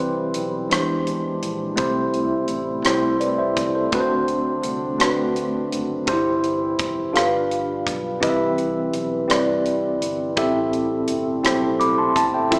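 In a slow, straight 6/8, this hopeful, uplifting gospel passage is carried by a clean, up-front tine electric piano playing seventh chords, with a mellow French horn section holding sustained chords in the background and a dark, round fingered electric bass underneath. A crisp, airy fusion drum kit joins at 0.3 seconds with hi-hat, rim click and a punchy kick. The whole passage sits in the moderate reverb of a church or concert hall with a small-speaker character, and it is cut from a longer piece.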